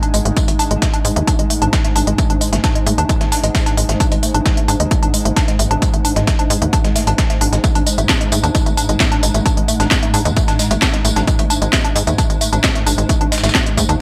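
A bright 1980s-style digital sheen with light reverb frames this driving, industrial peak-time techno cut at 132 BPM, where a punchy, up-front electronic kick entering at 0.4 seconds and a tight, nasal sawtooth sequencer bass pump beneath a woody, wave-folded pluck riff with chorus, overdrive and digital delay, while a techno drum kit with a cracking snare and gated reverb, a gritty sampler-style kit in the background, an airy, breathy pad and a very quiet swarming drone on G#2 fill out the texture.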